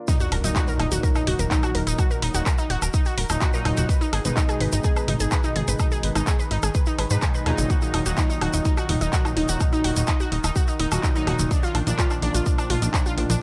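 A punchy, up-front electronic kick drives this dark, melancholic melodic techno drop at 126 BPM in Eb harmonic minor, joined from the start by a house kit of handclaps, bright hi-hats, toms and woodblock, a grainy tube shaker and a very quiet impact that ends at 2.0 s, while a funky, tube-saturated analog bass and a lush, ring-modulated unison pluck playing arpeggios with digital delay both pump to the sidechain, fat, chorused synth brass adds bold, sustained stabs, and from 1.5 s an evolving, very quiet analog drone on Eb3 sustains through the Ebm, Abm and Bb changes in light reverb.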